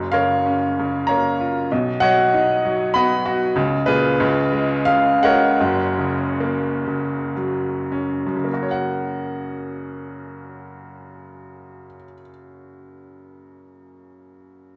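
Classical lyrical solo piano in F# major, a relaxed fragment of a longer piece in a rubato 3/4 that drifts between 49 and 98 BPM, with a bright, woody upright played up front, its action noise audible and its notes sustaining long through a moderate recital hall reverb, as it moves from F#maj7 through Badd9 to C#7, slows from 3.6 to 8.5 seconds, and settles on F# before a second section begins at 8.5 seconds, all heard through worn cassette tape with a warbly pitch drift.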